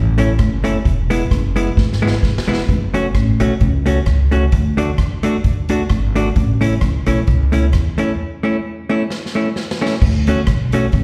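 A woody, thumpy pizzicato upright bass opens this joyful, bouncy ska excerpt at 131 BPM in A major with a light swing, heard as a live gig through the venue's PA in a recital-hall reverb. A clean, compressed hollow-body jazz guitar with slapback echo soon adds picked accompaniment, while an airy, boomy street-band drum kit with dark cymbals and a medium-tuned snare enters at 0.2 s, plays fills at 1.8 s and 9.1 s, and drives a break from 8.2 s to 10.0 s. The chords move through A, E, F#m and D before a new section arrives on Dmaj7 at 10.0 s.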